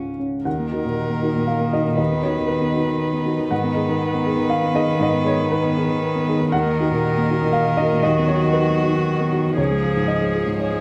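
A dark, worn upright piano and a distant, floating cello open this melancholic neoclassical excerpt together, with the piano sitting up front and its woody action noise and slightly detuned strings clearly audible. The cello carries a pure second line in a soft, sul tasto voice, while the piano supplies the accompaniment across a broad span of its range. At 0.4 seconds a single viola enters with an airy bow and light vibrato, joined by a very quiet chamber string section holding sustained chords. The music moves in a rubato 3/4 at around 118 BPM in Eb minor, its longing harmony passing from Ebm through B/D# and Abm7, then returning to Ebm and B/D# before landing on Db. Close, detailed microphones and light reverb keep the sound intimate, as though the players were only a few feet away.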